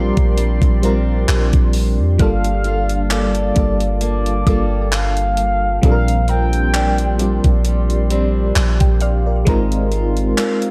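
Tender and smooth, this slow contemporary R&B excerpt at 66 BPM sits in Bb major with a lightly swung 16th feel, built on Bb69, Gm9 and Ab69 chords, with a dark production and little reverb. A deep, sine-toned 808-style bass and a thumpy, overdriven 80s drum machine with gated reverb, handclaps and hi-hat sit up front, and an FM electric piano with tremolo and phaser supplies the accompaniment, while a dark picked steel-string acoustic guitar playing arpeggios with audible finger squeak and a moody, detuned ambient pad with chorus fill the background. A round, horn-like synth lead with vibrato, chorus and delay carries the melody from 2.2 to 7.6 seconds, and a very quiet, woody mallet-like pluck adds bright texture up high.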